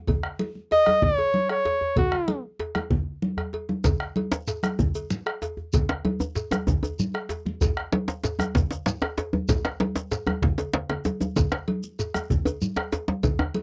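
A dry, close 1970s-style studio sound with light reverb frames this festive, powerful excerpt of West African drum ensemble music at 128 BPM in a straight 12/8, where a deep, dark bombo and bright, hard-handed congas sit up front beside a metallic cowbell and a tight, cracking djembe with metal rattles set in the background. A clear flugelhorn with vibrato plays a brief, punchy solo melody from 0.7 to 2.4 seconds, and as a drum fill closes, a second, soft-handed djembe and a grainy, mellow shekere join at 3.8 seconds. The fuller groove carries on through another fill near 10.7 seconds.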